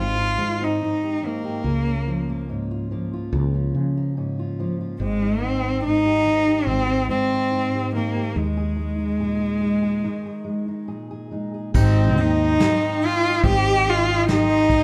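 Recorded by a band playing live in one large studio with moderate reverb, this tender, hopeful acoustic folk-pop ballad in Ab major at 71 BPM opens with an expressive bowed cello carrying the melody up front over a dark, full-bodied fingerpicked steel-string acoustic guitar and a growly, round fretless electric bass; at the close of a short break, a soft brush drum kit and a very quiet, lush detuned pad arrive at 11.7 seconds, joined at 11.8 seconds by a twangy pedal steel guitar in the background.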